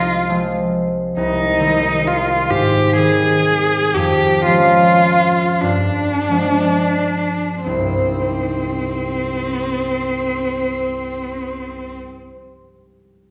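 Bathed in a recital hall's lush reverb, this brief cut from a longer romantic classical duo in C minor moves in a rubato 6/8 at 27-46 BPM by the dotted quarter, slowing through its first 7.7 seconds as a rich, focused cello sings a yearning, melancholic bowed melody with vibrato and a smooth top, up front over a ringing, fingerpicked concert harp accompaniment that passes through Abmaj7 and G7b9 before settling back on C minor and sounds on alone until 12.5 seconds.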